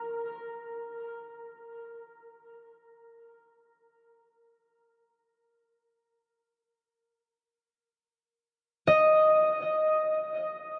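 A fingerpicked concert harp opens this ambient piece, sounding only from 0.0 to 0.2 seconds before dissolving into a huge, wet reverb with an 8.2-second decay. The mood is luminous and peaceful, carried by a dark, warm production that lets the space itself hold the listener's attention. The harp stays up front and acoustic, its ringing tone set in a diffuse ambient delay. It returns at 8.9 seconds and plays through to the close at 10.8 seconds, keeping to a narrow register between Bb4 and Eb5. Cut from a longer work, this brief passage feels like a suspended moment of calm.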